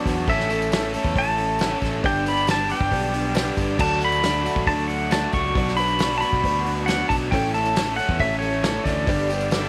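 A jangly folk and heartland rock excerpt at 136 BPM opens on a woody, very quiet upright piano, a hushed plugged-in acoustic guitar with fresh strings, a soft, flute-like tonewheel organ turning on a slow rotary speaker, and a double-tracked overdriven electric guitar riff bathed in spring reverb, over chords moving through A, G, D and B minor. At 0.1 s a bright, direct picked bass, a natural country drum kit with a fat snare and punchy kick, and a close, dry tambourine join, and at 0.3 s a twangy, compressed pedal steel takes the high melody with fingerpicked volume swells. Only at 9.5 s does a faint overdriven slide guitar slip in with a brief second line, the whole band sitting in light studio ambience.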